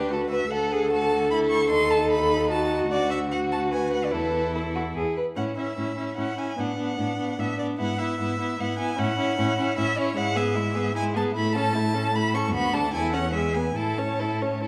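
Lively and graceful, this quick classical-period movement for string quartet in triple time is cut from a longer piece. Up front, the first violin sings the melody with a rich, expressive tone, soft attacks, vibrato and portamento, while the second violin carries a focused, smooth-topped second line and the close, clear viola supplies bowed accompaniment. A distant, even cello anchors the bass, all heard in a moderate recital-hall reverb, and around 5.4 seconds the harmony settles onto the home chord as a new section begins, closing on a cadence at 13.8 seconds.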